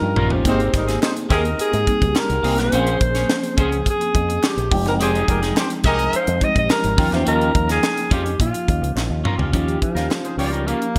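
Polished 1980s jazz-funk pop with a bittersweet, urban mood, cut from a longer piece, where an up-front alto saxophone with light vibrato carries the melody over mellow tine electric piano through analog chorus, a twangy, slightly broken-up guitar riff, punchy envelope-filtered fingered bass and a tight funk kit with a high-tuned snare and gated reverb, while a smooth-topped horn section adds a second line from 0.5 to 6.4 seconds and again briefly from 9.9 to 10.5 seconds, and hollow, very quiet handclaps sit in the small-room ambience of a bright digital production.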